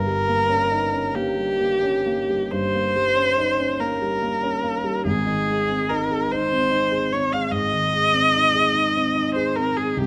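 A bowed viola and a baby grand piano begin together in this lyrical, romantic classical fragment. The viola sings the melody up front with expressive vibrato, portamento and a smooth top, while the piano's dark, mellow, vintage accompaniment reaches deep into the bass, with its action noise audible up close. The music flows in 12/8 with free rubato, settling from Eb7/G onto Ab at 5.1 seconds, all framed by light reverb and close, detailed microphones.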